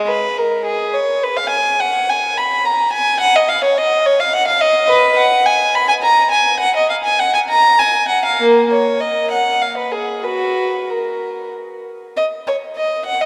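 In a rubato 3/4 pulse around 90-108 BPM, this solemn, flowing classical fragment from a baroque-style suite movement for unaccompanied violin settles into F# major from 4.9 s. A single bowed violin in period style sits up front, its gut-string tone reedy as it ranges from A#3 to B5. Its line hangs in the long, wet wash of a cathedral's reverberation.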